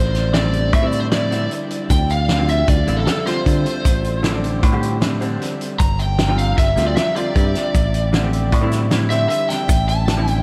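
Soaked in a huge, dreamy reverb, this tense, driving progressive instrumental in 5/4 features a picked, overdriven lead guitar solo through a small cranked amp with analog delay. Beneath it sit a dark, clean hollow-body jazz guitar with subtle chorus, an up-front fingered electric bass, a loose indie drum kit with a fat snare, punchy kick and rolled-off top, and a very quiet, grainy tube shaker.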